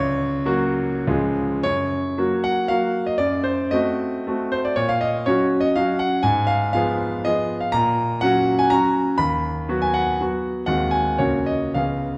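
Graceful and proud, this short excerpt cut from a longer romantic classical piece is a triple-time dance for solo piano, shaped by dotted rhythms in 3/4 and played with flexible rubato that lets the tempo drift between 91 and 132 BPM. A clear concert grand carries everything from start to finish, reaching from a deep bass around C#2 up to B5, its tone smooth with a vintage character and placed up front. The key is F# major, and after a brief opening phrase the music settles into a longer second section from 1.6 seconds. The harmony leans on colourful diminished chords, moving from F# through F#dim7 and Fdim/Ab before passing through B/D# and G#7/D# to land back on F#/C# at 11.2 seconds. A wet concert hall reverb with a 1.7-second tail surrounds the piano, giving the dance an elegant, spacious air.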